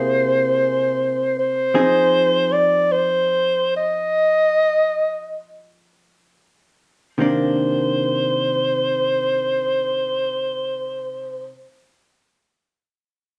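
Intimate and smoky, this free-time jazz ballad fragment sets a mellow, vibrato-laden clarinet melody up front over a dark, clean, compressed hollow-body electric guitar accompaniment, the two played live together in one room with a lush, reverberant large-studio ambience as the pace gradually slows through the first 7.2 seconds before settling on a final minor ninth chord.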